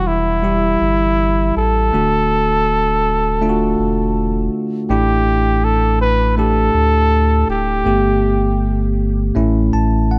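Dry and close, this short cut from an emotional, longing pop ballad at 81 BPM puts a warm flugelhorn up front, with light vibrato and scooped, jazz-style notes, over a bright, bell-like tine electric piano and a deep, thick, saturated sub bass; the horn drops out at 8.9 seconds before the electric piano plays a fill from 9.4 seconds.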